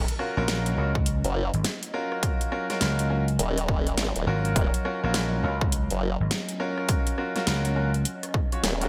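A formant-sweep wobble bass opens this funky, gritty glitch hop excerpt at 103 BPM in Eb minor, its detuned, chorused tone wobbling up front with tube saturation, while a dubstep drum kit of metallic hats, rim click and a huge snare with gated reverb swings over a lone Ebm7 chord. A clear concert grand piano adds delayed stabs with sidechain pumping, a punchy amped slap bass joins at 0.4 s, and a layered electronic kick lands at 1.0 s. Behind them sits a dark, nostalgic lo-fi pad that warbles with chorus and sidechain pumping, all framed by light reverb and bright 1980s-style digital production.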